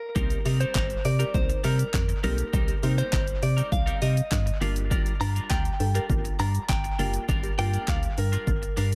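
A clean, direct-recorded electric guitar opens this bittersweet, energetic dance-pop excerpt at 101 BPM in C minor with a dub-echoed melody. From 0.2 seconds a bright, twangy twelve-string electric guitar riff with lush chorus joins in, along with a crystalline, detuned wavetable pluck pumping under sidechain, a hollow, dark organ-like FM bass and an up-front deep house kit of punchy kick, handclaps, hi-hat and shaker, all moving from Cm7 to Gm7 inside an echo-heavy digital ambience.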